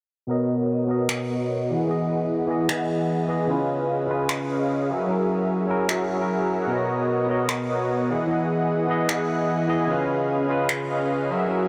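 Future bass at 150 BPM in a swung half-time 4/4 feel, this bright, euphoric fragment in B major sets a smooth, detuned supersaw riff over a barky, lightly overdriven tine electric piano, both up front and carrying filter sweeps and tape echo. Overdriven electronic finger snaps with a small-room character enter at 1.1 seconds, all under a long shimmer reverb as the chords move through Bmaj7, Emaj7, C#7 and F#7.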